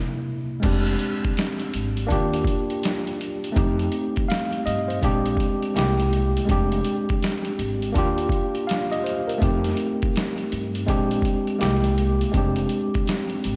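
Hazy and reflective, this lo-fi hip hop excerpt at 82 BPM in F dorian opens with a worn, slightly out-of-tune tine electric piano alone for the first 0.6 seconds before a muffled, thumpy sampler-style drum kit, a woody, growly pizzicato upright bass and a grainy egg shaker tucked in the background join a swung groove over lush chords like Fm69 and Ebmaj9, all soaked in a huge, dreamy reverb.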